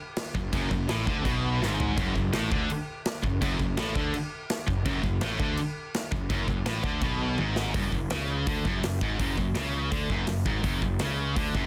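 A big acoustic rock drum kit opens this dark, heavy metal passage at 0.2 s, with a punchy kick, a medium-tuned snare, toms, hi-hat and bright crash cymbals sitting up front in a studio room. Almost at once, three electric guitars and a bass join on a riff at a driving 166 BPM in straight 4/4, centred in F# minor. A high-gain distorted guitar and a scooped high-gain guitar carry the riff with a bright, picked edge, while a double-tracked, thick fuzz guitar adds weight from the background until 7.7 s. Beneath them, a picked electric bass with overdrive and fuzz gives a growly, low foundation. Brief drum fills mark the music, and at 7.7 s the harmony shifts from an F# minor chord to an F#5 power chord as a new section begins. The sound is dry and dense, with a heavily limited modern master, and the passage is cut from a longer piece.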